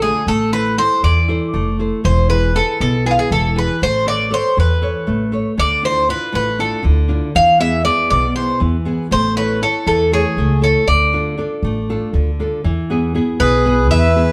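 Greek folk in a moody, cool 7/8 at 238 BPM counted in eighths, played live by a bouzouki band in a stone room with moderate reverb, moving from Am through E, Aadd9 and Dmadd9 before settling on E as a new section begins at 12.6 s. A bright, metallic bouzouki with doubled strings and some octave-doubled courses carries the picked melody up front, joined by a fingerpicked classical nylon-string guitar with fresh strings and a thumpy, woody, dark pizzicato upright bass. At 13.4 s a clear, reedy single-reed accordion with dry tuning slips in with a short second line before this cut from a longer piece ends.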